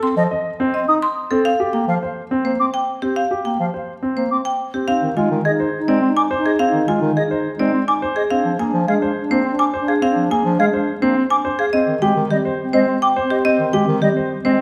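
In a straight three-beat metre, this hypnotic, urgent passage of minimalist classical pattern music, cut from a longer piece, puts a bright, woody marimba with hard mallets up front on the melody, over a smooth, mellow bass clarinet and a concert grand piano whose polished arpeggios carry audible action noise and long sustain. A pure concert flute adds soft-attacked arpeggios with vibrato from 0.2 seconds, and at 4.9 seconds a tongued alto flute with lifted highs enters on a low second line as the harmony moves through Fm7, Bb7 and Abmaj7. A moderate scoring-stage reverb surrounds the ensemble.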